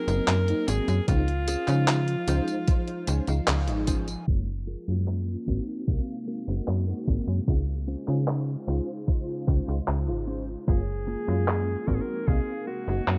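Vaporwave at 75 BPM in Db major, this dreamy, woozy cut from a longer piece moves through Ab9, Dbmaj7 and Gbmaj9 chords with a tape-worn, home-demo roughness and very little reverb. A bright, punchy alto saxophone with vibrato carries the jazz-style melody through tape echo, playing at the start and returning at 10.7 seconds. Underneath, a lush, detuned FM electric piano layered with a soft pad holds the accompaniment through ensemble chorus and tape echo, while a clean, compressed electric guitar picks a riff in the background through analog chorus and a low-pass filter, adding a fill just before the second section. A snappy, up-front FM bass with a metallic attack anchors the low end alongside a thumpy, sampler-style electronic kick and a detuned 8-bit drum machine of handclaps, hi-hat and tambourine, and the band hits an accent near 3.5 seconds. At 4.6 seconds a silky, mellow string machine enters in the background with phaser and ensemble chorus, its filter sweeping through the rest of the piece.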